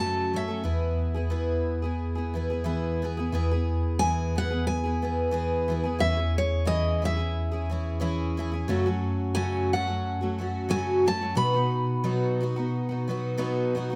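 Acoustic folk with a hopeful feel, cut from a longer piece, moving at 90 BPM in E major with a light swing. A picked steel-string acoustic guitar carries the melody up front, with a full-bodied, shimmering, octave-doubled twelve-string acoustic guitar picking beneath it and a clean tine electric piano holding down the bass through a combo amp with medium tremolo. Close, detailed microphones and light reverb keep the sound intimate as the harmony passes through F#m, E, C#m/E and B, and the melody guitar drops out at 13.3 seconds.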